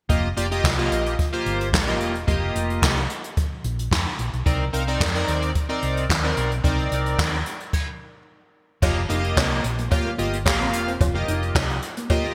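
A bright 1980s-style digital production bathed in lush hall reverb carries this slick, funky cut from an early-eighties boogie funk piece at 110 BPM in 4/4, moving from F9sus4 to Cm9. Up front, a retro, glossy chorused polysynth holds sustained pulse-wave and sawtooth chords with pulse-width modulation and a filter sweep, over a round, hollow-body fingered electric bass and a jazz brush drum kit with boomy kick, dark cymbals, handclaps and gated reverb. After a stop at 7.7 seconds, the groove returns at 8.8 seconds, where a clean, mellow electric guitar riff with analog chorus and a close, metallic cowbell join quietly in the background.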